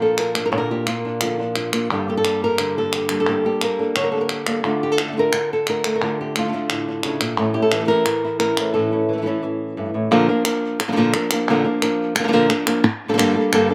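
A straight four-count pulse runs through this fiery and mournful flamenco passage, cut from a longer piece, with crisp palmas hand claps entering at 0.2 seconds and carrying on to the close. Up front, a fingerpicked flamenco guitar with fresh strings carries the melody across a broad range, its tone acoustic and warm. A second fingerpicked acoustic guitar sits further back, playing stabs beneath the melody until it stops at 10.1 seconds. The harmony moves from Bb through Gmadd9 and Dm to A, then returns to Bb and Gmadd9 as the closing section begins. A break from 8.7 seconds marks the turn into that final stretch, where the lead guitar and claps continue together under a light reverb in an open, outdoor-sounding space.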